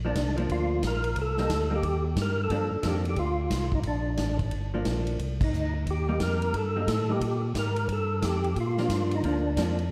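A dark, clean hollow-body jazz guitar with subtle chorus comps alongside a fat, overdriven tonewheel organ bass turning on a slow rotary speaker, then a percussive tonewheel organ with key click, chorus vibrato and analog delay takes the melody and an acoustic big-band kit with a punchy kick swings in at 0.2 seconds, giving this smoky, bluesy soul jazz organ trio excerpt in G minor at 178 BPM a dreamy, reverb-soaked hall sound, with a band accent at 5.4 seconds over the Cm7 chord.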